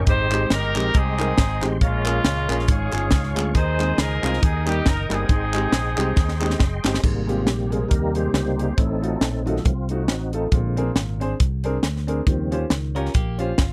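A clear, up-front horn section states the melody over percussive tonewheel organ chords, a round, dark fingered electric bass, a woody upright piano and a punchy, crisp fusion drum kit, with hollow group handclaps adding lift in this soulful, hopeful uptempo gospel excerpt at 138 BPM in Ab major with a swung feel. After a drum fill at 6.2 seconds, the lightly overdriven organ takes a solo from 7.0 seconds, its fast rotary speaker, chorus vibrato and key click to the fore over richer jazz-tinged chords. A clean, compressed electric guitar slips in a brief second line at 13.0 seconds, all within a dry, close 1970s-style studio sound.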